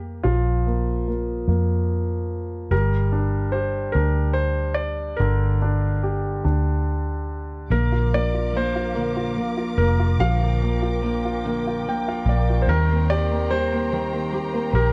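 This cut from a longer piece has a dry, close 1970s-style studio sound in a small room, with a heartfelt, romantic pop feel at a slow 48 BPM in a straight 6/8. A clear concert grand piano plays the accompaniment up front, intimate and polished with audible action noise and long sustain. Beside it, a dark, round, foam-muted electric bass sits up front. From 0.2 seconds a second grand piano carries the melody with a present, shorter-sustained tone. At 7.7 seconds the harmony moves to Bb, and a bowed string section with soft attack and expressive vibrato joins alongside a clean, picked, compressed electric guitar playing arpeggios in the background. A piano fill arrives at 11.4 seconds before the chords settle on Eb6, after earlier passing through Bb5 and Gm.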